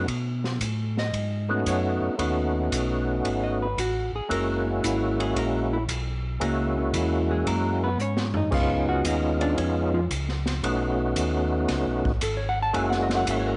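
A gritty, overdriven tonewheel organ carries the melody up front in this soulful, bluesy soul jazz organ trio fragment, its percussive second-harmonic attack colored by chorus vibrato and a slow rotary speaker. Beneath it, a second tonewheel organ supplies a mellow, round bass line, lightly overdriven and shaped by the same chorus vibrato and slow rotary swirl. A dark, clean, fingered hollow-body electric guitar enters at 1.0 s and takes a solo over the ninth-chord changes moving through B9, F#9 and C#9. An acoustic jazz kit in 4/4 swings the eighth notes with dark cymbals, a high-tuned snare and a boomy kick, and it drops in a brief fill at 8.0 s. The whole trio sits in a small room with moderate echo-chamber reverb, and the top end is softened, giving the recording a close, intimate sound.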